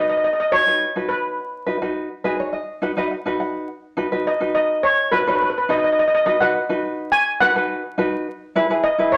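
Vinyl crackle and a roomy studio reverb frame this short, carefree calypso snippet, where an up-front lead steel pan struck with hard rubber sticks carries the festive melody in a shimmering, metallic, band-limited vintage tone, while a light, warm, thumb-plucked acoustic tenor ukulele, also up front, accompanies throughout and adds a fill from 2.0 to 3.7 seconds.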